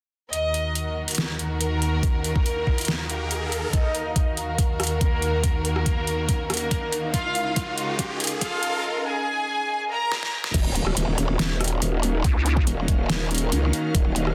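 A growling, aggressive bass arrives with the drop at 10.5 seconds in this menacing, heavy wobble dubstep excerpt, sitting up front with a detuned, saturated snarl, chorus and overdrive, while a nasal, resonant vowel-sweep wobble bass cuts in briefly on Db2 at 12.2 seconds. Before that, a lush symphonic violin section carries the melody, bowed with vibrato and smooth even tone, run through a low-pass filter and dub echo that sweeps through the build-up. Beneath it a dark, intimate string section holds sustained chords with a soft attack and sidechain pumping, and an ethereal, airy pad glows in the background with chorus, phaser and reverb. The overdriven, layered drum kit brings a deep snare, metallic hats, rim clicks and crashes, and a knocking electronic kick joins at 2.0 seconds, dropping out briefly before the build-up and returning under drum fills. Set in Eb minor at 141 BPM with a half-time feel, the piece moves from Ebm through Dbadd9 and Absus2 to Ebm7, with electronic risers climbing through the build-up and an impact marking the drop in a dense, heavily limited mix.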